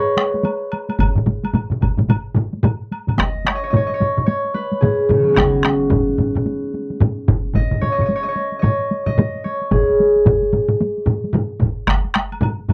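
A thumb-plucked concert harp sits up front, its ringing tone carrying the melody from 0.0 seconds in a C# suspended pentatonic mode, ranging from B2 up to D#5. Beneath it, a taiko drum ensemble lays down a ceremonial, powerful drive at 110 BPM in 4/4 with a 60% swing on the sixteenths. Four taiko parts make up the drum section: one struck with heavy sticks sounds close and dry, another with hard sticks is similarly close, a third is compressed and saturated, and a fourth with heavy sticks sits in the background in a small room. A woody woodblock, also heard in a small room, taps in near the start and returns for the final stretch from 11.9 seconds. The overall sound is a dry, close 1970s-style studio recording with a moderate booth ambience, and this clip is cut from a longer piece, ending at 12.7 seconds.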